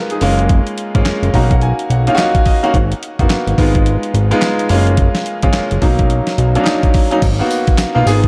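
New jack swing R&B at 107 BPM with a slick, bouncy swing on the 16ths, moving through F#maj7, Bmaj7 and G#m9 chords in G# dorian in this short cut from a longer piece. A clear concert grand piano with a polished tone and shimmer reverb carries the accompaniment and plays a fill from 1.1 to 2.7 seconds, while a fat, saturated analog bass with a nasal, detuned sawtooth edge sits low and up front. A gritty, compressed boom bap sampler-style kit with a thumpy kick, medium-tuned snare, handclaps, hi-hat, tambourine and crash drives it all, framed by a dark production with light reverb.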